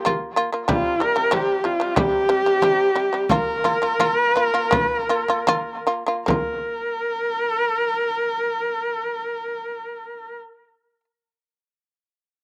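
A rich, husky horsehead fiddle opens this proud, galloping piece of Mongolian folk music, its bowed, focused melody full of vibrato and portamento, over percussive, buzzing shamisen arpeggios and a deep frame drum played with hard hands. The pace slows from 0.7 to 6.3 seconds, where a new section begins, and the drum drops out at 6.7 seconds while the fiddle and shamisen carry on. Fiddle and shamisen sit up front in a dry outdoor sound with little reverb, and a slapback echo trails each of the three parts.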